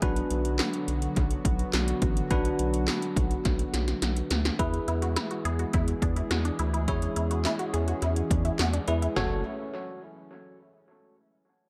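This driving, melancholic synth-pop passage at 105 BPM in 4/4 opens at once with a bell-like tine electric piano, a smooth analog pad with slow-attack chords and chorus, a deep, round square-wave bass sitting up front, and 80s electronic drums of punchy kick, gated snare, metallic hats, handclaps and toms. The electric piano sounds bright and clean, its accompaniment trailed by analog delay, while the mellow, detuned pad holds sustained chords beneath it over a Bm harmony. A drum fill from 3.5 s leads into a shift to E at 4.6 s, where a juicy, squelchy blip pluck enters with resonant, fast-decaying arpeggios colored by phaser and delay. The drums carry gated reverb on snare and toms and a tape-warm tone, and the harmony turns to F#m near 9.2 s before the cut. Spring reverb and heavy echo give the mix a spacious, reflective sheen.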